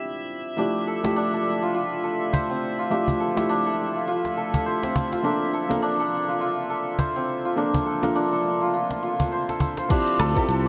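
Bathed in a lush hall reverb with a bright 1980s-style digital sheen, this short, meditative organic downtempo excerpt moves at 103 BPM in a swung 4/4 over Dm11, Fmaj9 and Bbmaj7 harmonies. A felt-muted upright piano with a boxy, intimate tone carries the accompaniment through sidechain pumping and digital delay, while a glassy, drifting harmonics texture hovers softly behind it with chorus. Shimmering santur arpeggios enter at 0.6 seconds, joined by a snappy, close cajon, before a soft electronic kick and a kit with crisp hats arrive at 9.9 seconds and a growly, punchy fretless bass comes in at 10.2 seconds.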